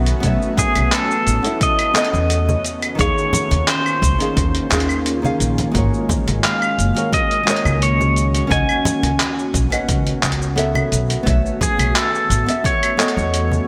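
Relaxed and warm, this sunset chillout excerpt drifts in a straight 4/4 over a chain of suspended ninth chords moving from B9sus4 through Eb9sus4, Ab9sus4 and Db9sus4 before returning to B9sus4. A fingerpicked nylon-string guitar carries the accompaniment with a classical touch, bathed in digital delay and shimmer reverb, while an ethereal, detuned pad with an octave-up shimmer, chorus and granular texture holds sustained chords beneath it. The woody pizzicato upright bass sits prominently at the bottom, joined by a gritty, tape-warm sampler-style kit of cabasa, claves, handclaps and hi-hat with gated reverb, plus a punchy, overdriven electronic kick. From 0.6 seconds, a twangy pedal steel guitar takes the melody up front, played with fingerpicks, slide and volume swells through delay and shimmer, as soft-handed congas tap along close and dry in the background. A lush hall reverb and bright 1980s-style digital production give the whole piece a glossy, spacious finish.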